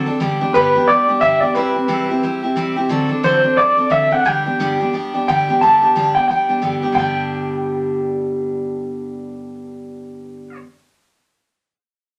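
Upbeat, retro rock at a brisk swung pace, cut from a longer piece. A picked steel-string acoustic guitar with a bright, full-bodied jumbo tone carries the accompaniment from the start, sitting up front through a simple progression of G, C, D7 and back to G. At 0.5 seconds an electric guitar played through a small old amp joins with the melody, its twangy, slightly broken-up sound pushed forward and colored by tremolo. The lead sits louder than the acoustic and stays in a high register, giving the short passage a lively, vintage character. A moderate studio reverb lends the pair a touch of space. The phrase moves through three brief sections before both guitars stop near 10.6 seconds.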